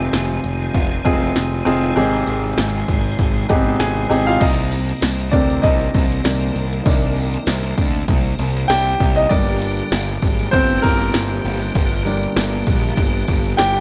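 Opening on a clear baby grand piano over piping tonewheel organ chords with key click, lightly overdriven and turned by a slow rotary speaker, plus a fuzzy, punchy picked electric bass and an up-front, tape-toned analog drum machine, this uplifting piano-driven pop excerpt at 98 BPM with a light 16th-note swing moves from Fm7 to Abmaj7 before the piano takes a polished solo at 4.4 seconds, joined by a jingly tambourine set distant in the background, in a dry mix marked by lossy compression artefacts.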